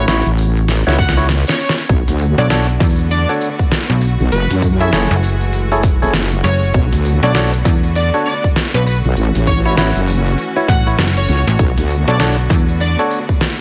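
Dry, tape-warm and gritty, this swaggering glitch hop excerpt in B dorian rolls at 99 BPM with a swung 16th feel, pairing a heavy, saturated wobble bass and a snappy, metallic slap-like FM bass up front with a punchy electronic kick, a dubstep kit of deep snare and crisp hats, a drum fill from 0.7 to 1.9 seconds, grainy background maracas, percussive clav stabs through a combo amp with sidechain pumping and digital delay, a bright, catchy plucky unison lead melody bathed in lush chorus, and a smooth, rich string section entering at 1.9 seconds with pumping sustained chords over A6, Bm7 and F#m9.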